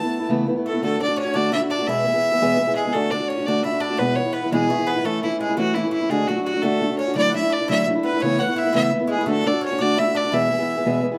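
A clear, intense fiddle with light vibrato carries the melody up front in this lively, rollicking Celtic jig in 6/8, over a woody, boxy fingerpicked archtop guitar with old strings, a metallic double-strung Irish bouzouki picking a second line in the background, and a very quiet, reedy single-reed accordion that drops out at 2.7 seconds and returns at 7.2 seconds, all in a moderate studio reverb.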